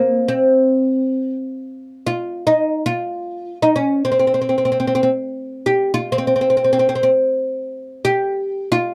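Arabic maqam ensemble music in free time and C maqam kurd, this hypnotic, soulful excerpt features a solo oud, woody and plectrum-plucked with double strings, up front in a dry, close 1970s-style studio sound as it moves between Bb3 and G4 across its 8.9 seconds.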